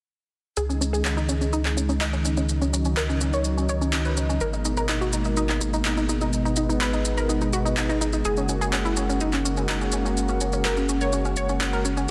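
A dense, heavily limited mix with light reverb carries this driving, dreamy progressive house excerpt at 125 BPM, where a lush, detuned unison pad with chorus and a filter sweep holds sustained chords while a warbling, vintage analog pluck plays bright arpeggios through chorus, dub echo and its own filter sweep, a round, deep analog bass sits up front, grainy, close maracas add texture, and layered electronic handclaps with studio reverb join at 1.1 seconds over a C#sus2, G#madd9 and F#add9 progression.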